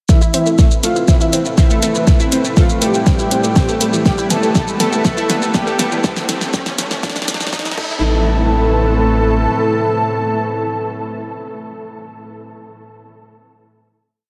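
Opening at once on a four-on-the-floor electronic kick, a fat snare with hats, shaker and crash, a galloping plucky analog bass and a background pluck arpeggio, this short, cinematic and melancholic melodic techno piece builds under filter sweeps on a smooth supersaw riff doubled an octave higher by an airy, dreamy lead over a lush pad, joined by an overtone-sweeping drone from 1.5 s and a very quiet riser from 4.4 s, until the drums drop out at 7.9 s and the synths ring on as a final hit in a vast, reverb-soaked space.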